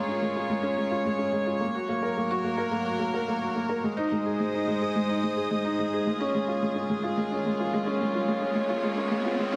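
A felt-muted upright piano plays an intimate, mellow riff through a digital delay over reedy, gut-string chords from a close chamber string section with light vibrato, moving through Bbm7, Gb and Ab in this hypnotic, cinematic piano-and-strings electronica build-up, while an electronic riser enters in the background at 7.3 seconds, all set in a small room with moderate echo-chamber reverb.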